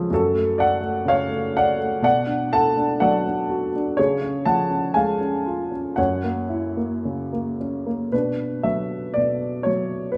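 A dark, worn grand piano, set up front with audible action noise and a boxy, short-sustained tone, plays a wistful, melancholic classical solo in F# harmonic minor, moving freely with rubato at around 54-63 BPM in 4/4 through F#m, Bm7, C# and F#7 before turning to a new section on Bm at 8.1 s, all in a moderate recital-hall reverb, in this excerpt cut from a longer piece.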